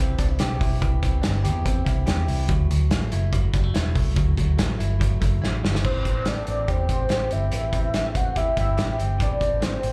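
This jangly indie pop excerpt moves at 143 BPM in a straight 4/4 and carries a bittersweet, wistful mood, heard as a live gig through a club PA with some room reverb. A bright, compressed clean electric guitar, recorded direct, picks arpeggios throughout with slapback echo and delay. Underneath, a vintage fingered electric bass sounds round and foam-muted. A loose acoustic drum kit, placed up front, brings a punchy kick, medium-tuned snare, hi-hat and dark crash cymbals with a rolled-off top and a pumping room. The harmony moves from C to Dadd9, and after a drum fill the music settles into A minor on an Am7 at 5.8 seconds. At 5.9 seconds a velvety synth lead enters with the melody, a smooth, sustained blend of sawtooth, triangle and square waves with a sub octave, colored by chorus, tremolo, slapback echo and delay.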